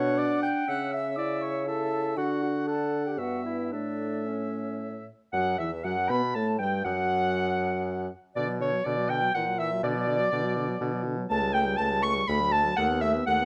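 Cheerful and lively, this short cut from a quick classical-period movement for wind quintet moves at 121 BPM in a rubato 3/4, with a mellow, airy silver flute carrying the melody in the background with vibrato and a soft attack, a bright oboe singing a second line, a smooth clarinet and dark French horn filling the accompaniment, and an up-front bassoon anchoring the bass, all in a dark, lightly reverberant production that shifts into a new section at 5.3 seconds.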